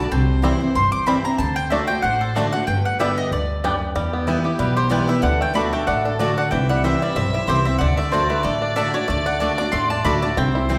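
Driving at 187 BPM in 4/4 with a light swing on the eighths, this joyful, rustic bluegrass cut from a longer piece puts a bright, woody, up-front mandolin on the melody over a clear, smoothly bowed fiddle second line with light vibrato, a full-bodied picked steel-string guitar with audible finger squeak, and a dark, thumpy pizzicato upright bass, while a twangy fingerpicked banjo playing arpeggios and a warm background mandolin playing stabs join at 0.4 s, all moving through C, D, G and Em in the generous reverb of a church or concert hall.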